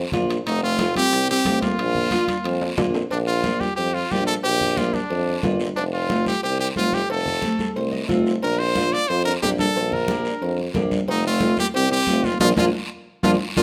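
Sunny and festive, this cumbia excerpt moves at a brisk 181 BPM in straight 4/4, set in Bb major and shifting between F and Bb chords. A clear, punchy tuba with vibrato carries the bass line from the very start, while a bright, full-bodied nylon-string guitar fingerpicks the accompaniment, its finger squeak audible, and adds a fill at 7.4 seconds. Up front, a brilliant, forceful trumpet with vibrato takes the melody from 0.5 seconds, joined by a dark, clean electric guitar playing a fingered second line in the background that drops out and returns at 8.4 seconds. Thick-skinned congas struck with hard hands sit in a live room, joined by a raspy guiro and ringing metal-shell timbales and cowbell further back, with drum fills marking section turns. A full band accent arrives at 12.4 seconds, and light reverb gives the mix a touch of space.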